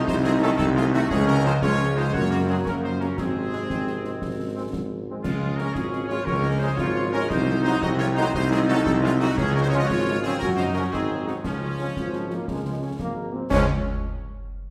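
This short cut from a longer military-style march for wind band sounds as if heard from further back in a recital hall, with a wet reverb around the ensemble. Set in Db major and 6/8 at 116 dotted-quarter beats per minute with a straight feel, it carries a proud, spirited mood, moving from a Cdim7 opening through Db, Gb and Ab before closing its phrase on Db at 11.4 seconds. A clear, close-miked trumpet section carries the melody with light vibrato, while a clear tuba sits up front on the bass line. A warm, vintage-toned euphonium in the background and a tight woodwind section with light vibrato share a second line, and a mellow, very quiet French horn section with a smooth top fills in accompaniment. A clear trombone section holds sustained chords from 0.4 seconds in the background, and concert snare drum, concert bass drum and clash cymbals with dark cymbals add a close, dry, acoustic pulse behind the band.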